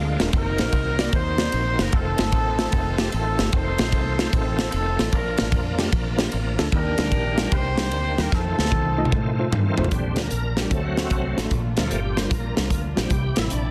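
A bright, shouting tonewheel organ with key click, chorus vibrato and a slow rotary speaker holds full chords through this uplifting, hopeful uptempo gospel excerpt with a swung feel, then takes a solo from 9.9 seconds. A distant, roomy horn section with light vibrato and slapback echo carries the melody over a worn, slightly out-of-tune tine electric piano in the background, a dark, round and punchy fingered bass, and an up-front acoustic drum kit with a tight kick, a medium-tuned snare and a pumping room, which plays a fill just before the organ's turn. A lush, very quiet bowed string section enters at 9.9 seconds under light studio reverb, all pressed into a dense, heavily limited modern master.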